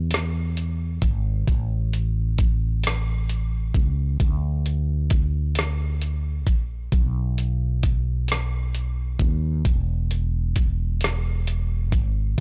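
Intimate and tender, this slow six-eight R&B fragment moves at 44 BPM in dotted quarters with a straight feel. A dark, round fretless electric bass sits up front in the low register alongside a gritty, sampler-style soul drum kit of hi-hat, rim click and a thumpy kick. The whole recording is blown-out and overdriven, wrapped in a digital ambience.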